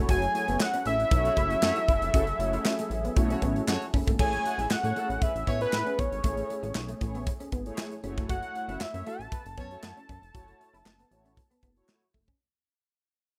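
A fat, mellow analog lead with vibrato sits up front, singing the melody over a punchy modern drum kit with bright cymbals, handclaps and a chorused, glossy synth bass in this feel-good, smooth stretch of early-eighties boogie funk. Beneath them, dark chorused and phased synth brass, a soft analog pad and a slightly broken-up electric guitar riff in the background move between minor-seventh and major-seventh chords, while a distant, roomy horn section adds a second line from 1.2 to 9.8 seconds. The rough home-demo mix carries a small room ambience and fades out from 4.2 seconds onward.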